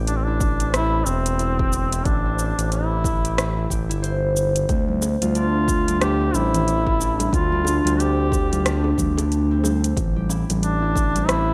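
Warm and meditative, this organic downtempo piece moves at 91 BPM in 4/4 with a swung sixteenth feel, sitting in D minor and drifting from Am7 to Dm7 at 4.7 seconds. A clear duduk carries the melody up front with vibrato and scooped notes, its vintage, folk-style voice touched by delay. Beneath it, a concert harp rings with fingerpicked arpeggios through its own delay, while a smooth gliding synth bass, sawtooth-edged and wave-folded, sustains with portamento, vibrato, tube saturation and sidechain pumping. The rhythm comes from an afro-pop drum kit of metallic hi-hat, rim click and shaker with a tape-warm tint, plus a punchy, layered electronic kick. Congas and bongos join in the background at 4.9 seconds, bright yet band-limited, played with soft hands. Light studio reverb frames this rough home-demo mix, which is cut from a longer piece.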